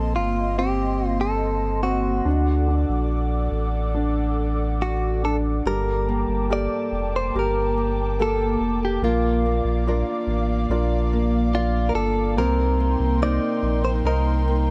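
An emotional, longing pop ballad opens with a clean electric guitar carrying the melody up front, over a natural-sounding grand piano, a deep, round sub bass and an airy, breathy pad with chorus. At 5.7 seconds a fingerpicked nylon-string guitar joins in the background, playing arpeggios touched with tape echo, while light reverb gives a small-room feel to this passage from a longer piece.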